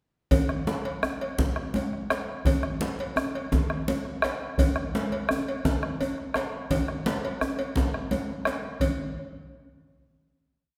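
From 0.3 s, a deep, dark bombo, a djembe with metal rattles, thick-skinned, medium-tuned congas and a metallic cowbell playing a bell pattern start together, setting a driving, festive West African drum-ensemble groove at 113 BPM in 12/8, counted in dotted quarters. The bombo sits close, dry and up front, while the soft-handed djembe is up front yet distant in a large room; the hard-handed congas sound compressed and saturated, and the cowbell rings in a small room. All four parts play until 9.0 s, and this complete piece closes on a final hit from 8.8 s, heard in a wet concert hall reverb.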